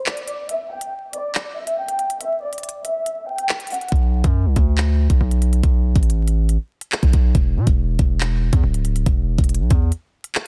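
A half-time drill groove of knocking kick, crisp hi-hats and handclaps runs through this dark, cold hip hop fragment cut from a longer piece, dry and densely limited with a layer of vinyl crackle. A lush, bowed symphonic violin section opens over the drums until 3.9 seconds, its vibrato-rich line softened by a low-pass filter and trailed by delay. Then a saturated, aggressive 808-style bass with a fast attack hits hard, moving from Bm to E5 before it drops out at 9.9 seconds.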